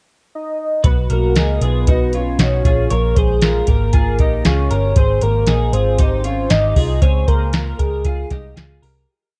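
A dark, warm production steeped in digital ambience frames this short, youthful and nostalgic jangly indie pop piece, where a dry analog rhythm box with a deep kick, crisp snare and metallic hats drives a brisk backbeat under a round, foam-muted picked bass line with slides; meanwhile a bright, twangy twelve-string electric guitar rings out compressed picked arpeggios doubled in thirds through analog chorus, and a velvety, detuned sawtooth synth lead with a sub octave, entering at 0.3 seconds, carries hook phrases through chorus and tremolo before the piece fades out between 7.0 and 9.1 seconds.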